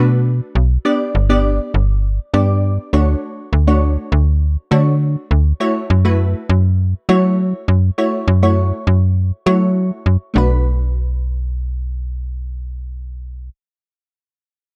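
A digital ambience and light reverb frame this short dance-pop excerpt, cut from a longer piece, in B minor at 101 BPM with a straight 4/4 feel. The mood is confident yet bittersweet, carried by a slap-like FM bass that sits up front with a snappy, metallic attack and decaying notes ranging from G1 to F#3. Above it, a wavetable chord stab plays accompaniment between A3 and D5, its detuned, triangle-based tone shaped by a filter pluck and a moving notch that leaves it mellow despite its sharp onset. The harmony moves from Bm7 through G, Dmaj7 and F#m7 before a second section begins at 10.4 seconds back on Bm7. The bass stops at 13.5 seconds, leaving the chord stab to sound on its own until 14.0 seconds.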